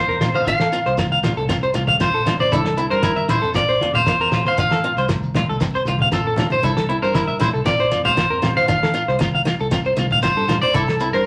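Two slightly broken-up electric guitars sit up front from the start of this sunny, joyful highlife excerpt: a fingered, twangy one carries the melody while a picked, compressed one plays arpeggios, over a bright, boxy swing-style acoustic guitar and a round, foam-muted fingered bass in the background. At 0.2 s a dry, dark, cloth-damped drum kit with a fat snare and tight kick enters, joined by distant, low-tuned congas, a grainy shekere and very quiet, ringing agogo bells. The straight groove cycles through F/A, C6 and Bbsus2, all set in a club reverb with a layer of vinyl crackle.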